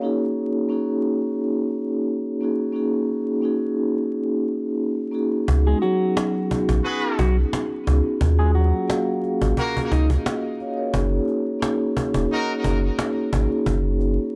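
Reflective and moody, this boom-bap hip-hop excerpt moves at an unhurried 88 BPM in 4/4 with a light 16th-note swing, cut from a longer piece. A close-miked vibraphone played with soft mallets opens alone, its metallic, ringing tone mellowed by a slow motor vibrato and filtering, sitting full and up front over a Gb6 chord. At 5.5 seconds a deep, thick, saturated sub bass arrives with a fast attack and sustained notes, joined by a woody acoustic cajon with faint snares, as the harmony moves through Db9sus4 and Ebm11 before returning to Gb6. A dark, clean, fingered electric guitar carries the melody until 10.1 seconds, colored by phaser and tape echo, while from 6.8 seconds a tight jazz-style trumpet section adds clear stabs with light vibrato, set distant and roomy behind tape echo. The whole is a dry, gritty hardware recording in a small room, with vinyl crackle adding dusty texture.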